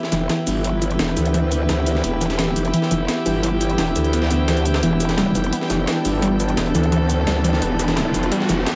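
An aggressive, up-front growl bass dominates this tense, dark excerpt of technical drum and bass, its saturated, wobbling tone thickened with chorus and overdrive in the low register. Behind it, an eerie FM drone holds sustained chords with a slow attack and a metallic, inharmonic shimmer, while a detuned sawtooth unison pluck spins arpeggios through a dub echo, both drifting under filter sweeps as the whole passage builds. A gritty, pitched-up breakbeat kit with a high-tuned snare and high-passed hats drives the groove, joined by an overdriven electronic hi-hat and cabasa layer that sounds re-recorded in a small room. A bowed chamber string section with light vibrato and a reedy gut-string tone adds a close, period-style texture on top. A very quiet electronic riser enters at 6.8 seconds to push the build-up forward, all set in a moderate digital room reverb.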